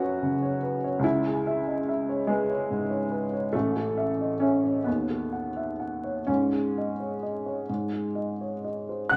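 A haze of vinyl crackle and a large, wet studio reverb surround this short excerpt of a romantic classical nocturne for solo piano. Its mood is melancholic and mournful. The upright piano sits up front with an intimate, woody tone. It is slightly detuned, and its action noise stays audible beneath the notes. The piano plays alone from 0.0 to 9.2 seconds, ranging from A1 up to F#6 in a slow 6/8 of about 41 to 49 dotted-quarter beats per minute, shaped with a free rubato. The harmony moves from F# minor through C# minor and A major to a half-diminished D#m7b5, then settles on G#sus4 before resolving to G# major.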